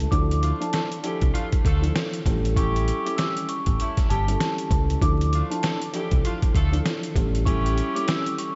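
A swung boom-bap groove at 98 BPM in 4/4 drives this reflective, gritty hip-hop fragment in D harmonic minor, cut from a longer piece and moving between Dmadd9 and A7. The trip-hop sampler-style kit sits up front, pitched down, compressed and muffled, with a thumpy kick, a medium-tuned snare and hi-hat, while a barely audible, close and dry finger snap enters at 0.7 seconds. Beneath it, a deep dub fingered electric bass gives round, dark low notes and stops at 7.8 seconds. A woody, boxy upright piano carries the accompaniment with long sustain, audible action noise and a cassette-tape tint. Above it, a vibraphone played with soft mallets sings the melody with a ringing, metallic tone, medium motor vibrato and a diffuse ambient delay, and a clear jazz-style saxophone section adds light-vibrato stabs from 0.4 seconds, washed in the same delay. The whole mix sits in a small room with light reverb and vinyl crackle, its top end dulled like an old record.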